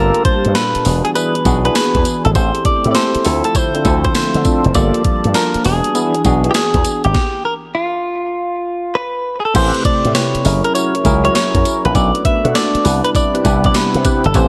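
New jack swing R&B at 100 BPM in 4/4, with a swung sixteenth-note feel and a slick, confident mood, heard in a short cut from a longer piece. A clean, compressed electric guitar recorded direct carries the melody up front, its picked lines dressed in lush chorus and delay. Underneath, a bell-like tine electric piano plays bright, clean accompaniment, while a tonewheel organ adds fat, lightly overdriven stabs with key click, chorus vibrato and a slow rotary speaker. A detuned sawtooth pad sits in the background with sustained, evolving chords, slow attack and a filter swell, and a punchy slap bass with an envelope filter drives the low end alongside a gated 80s drum machine whose thumpy kick, gated-reverb snare, hi-hat, tambourine and crash have a tape-warm, sampler-style punch. The harmony moves from Gm9 through E7, Am7 and Dm7, then the band hits a stop at 7.2 seconds before resuming at 9.6 seconds on Am9, F#7, Bm7 and Cmaj7. 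The mix is dry, with a faint mains hum audible beneath the parts.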